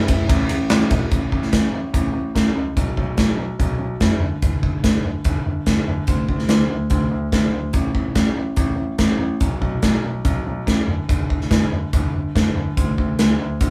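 Sunny and driving, this classic rock excerpt moves at 144 BPM in a straight 4/4, cut from a longer piece. A grand piano carries the bass line low in its register, its tone intimate and natural with audible action noise and a short sustain, sitting up front in the mix. A gated 80s drum kit enters at 0.1 seconds with hi-hat, kick, snare and ride, sounding big, airy and polished, with bright cymbals, a tight kick and a medium-tuned snare, also placed up front. The band plays together in one stone room, giving a moderate reverb and a small-room ambience to the whole performance. After a brief opening passage, the music moves into its second section at 1.1 seconds and drives on to the end at 13.7 seconds.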